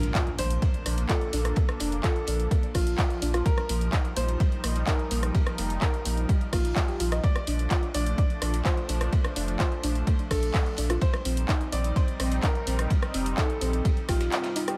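Progressive house with an expansive, hopeful mood, where an intimate, boxy grand piano carries the melody through dub echo over a lush, bright unison pad and a soft, round pluck spinning chorused, delayed arpeggios, both pumping with the sidechain. A deep, saturated sub bass and a punchy, up-front electronic kick anchor the groove, joined by a layered deep house kit of handclaps, rim clicks and dark hats, and a gritty, rolled-off breakbeat kit of snare, hi-hat and ride tucked in the background. A very quiet impact opens the passage, and the chords move from Bb through Ebadd9/Bb and Dm/Bb to Cm/Bb in a small room ambience.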